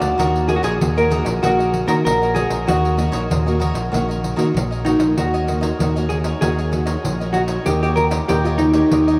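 A dark, clean hollow-body jazz guitar carries the melody up front, its picked notes moving between Eb4 and Bb4 in this nostalgic, bittersweet piece of samba and choro. Set at 96 BPM in a straight 4/4 and in Eb minor, the passage rests on an Ebm7 chord until it shifts to Eb7 at 7.7 seconds, with a new section beginning at 5.2 seconds. Beneath the lead, a bright, growly fingered electric bass sits direct and punchy, while a crisp picked cavaquinho and a small, fingerpicked nylon-string guitar with fresh strings and audible finger squeak fill in the accompaniment, the nylon-string guitar tucked in the background. A jingly acoustic pandeiro supplies the percussion with its own small-room ambience. The whole recording is bathed in a huge, wet reverb that evokes a vast, echoing space, and the passage is cut from a longer piece.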